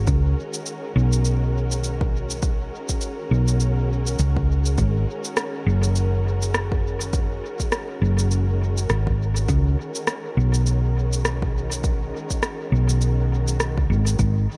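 A round, up-front hollow-body electric bass anchors this meditative, hazy ambient dub excerpt at 102 BPM with a swung 16th feel, alongside a deep, tape-warm electronic kick, an electronic shaker and rim click carrying dub echo, and a lush, woody bowed string section that fades in on sustained chords, moving from C#7sus4 to G#5 and back in a dry mix.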